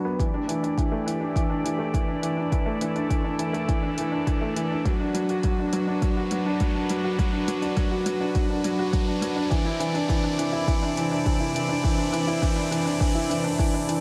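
Piano and strings electronica with a hopeful, luminous feel builds throughout this fragment of a longer piece. An up-front, dark, boxy baby grand with audible action noise plays a delayed riff over bright, earthy bowed chamber strings, which hold sustained chords through a filter sweep and sidechain pumping, while a round sub bass sits barely audible beneath. From 0.2 s, a deep overdriven electronic kick, a layered overdriven hi-hat and an electronic riser join, all in a moderate echo-chamber ambience as the harmony moves from A7sus4 to Gmaj7 to Cadd9.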